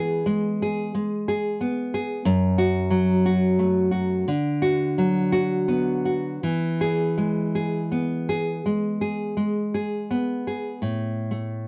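A fingerpicked nylon-string guitar carries this brief romantic solo, sitting up front with a bright, acoustic classical tone and finger squeak audible on the strings. The mood is tender and sunny, and the playing moves with a free, rubato feel in 4/4 rather than a strict pulse. The harmony drifts from a rootless E through F#m and Bm/D before settling back on E, with the guitar ranging from F#2 up to G#4. The sound is dry and close, in the manner of a 1970s studio recording, with only light reverb around the instrument. Cut from a longer piece, the passage lasts about 11.7 seconds, its harmony giving way at 10.8 seconds.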